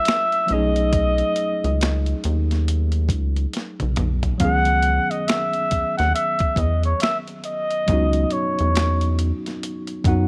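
Set in a digital ambience, this late-night, soulful neo-soul and R&B excerpt features a breathy, vintage flugelhorn melody with light vibrato and slapback echo up front, a worn, slightly out-of-tune tine electric piano that closes on a fill at 9.6 seconds, a gritty, pitched-down boom bap sampler-style kit of finger snaps, hi-hat, thumpy kick, high-tuned snare and toms with a drum fill at 3.5 seconds, and a rubbery, hollow square bass entering at 0.5 seconds over chords moving from B13 to C#7sus4.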